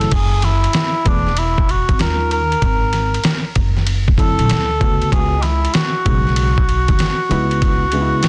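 A mellow cor anglais with light vibrato and delay sings a classical-style solo melody up front over a worn, slightly out-of-tune tine electric piano, a woody pizzicato upright bass and a gritty, pitched-down sampler-style drum kit with a thumpy kick, giving this smoky, nocturnal jazz-hop cut in F# minor a swung 96 BPM groove, light reverb and a dense, heavily limited modern sound.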